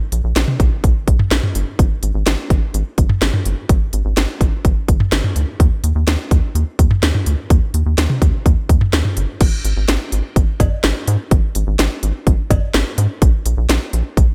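A punchy, up-front house drum kit drives this wistful yet upbeat synth-pop excerpt at 126 BPM in a straight 4/4, layering kick, cracking snare, crisp hi-hats, cowbell, toms and crash cymbal from 0.1 to 14.3 seconds. Alongside it, a rubbery, hollow square-wave bass with a sine tone, fast plucked filter attack and moving notch sits dark and bouncy between G1 and Ab2. The bright 1980s-style digital production carries light reverb, and the music shifts into a new section at 9.4 seconds.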